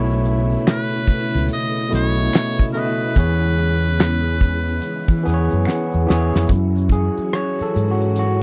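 A muted trumpet with a metal mute carries the melody from 0.7 to 5.7 seconds, its buzzy, thin tone close-miked and forceful, with light vibrato, scooped notes and a slapback echo giving it a jazz-style edge. Underneath, this late-night, introspective neo-soul and R&B excerpt moves at 72 BPM in 4/4 with a swung sixteenth-note feel in F# dorian, shifting from B9sus4 to E6 and then to F#m9. A gritty, barky overdriven tine electric piano played through a combo amp sits up front in the accompaniment, adding a fill before taking a solo from 6.5 seconds to the end. A round, amped fretless electric bass and a damped 70s drum kit with a fat snare, tight kick and rolled-off top, heard through handclaps, hi-hat, rim click and a drum fill, anchor the groove. In the background, a swirling, vintage string machine holds slow-attack sustained chords through ensemble chorus and phaser, while a band-limited egg shaker and finger snaps add faint texture to the dry, close 1970s-style studio sound.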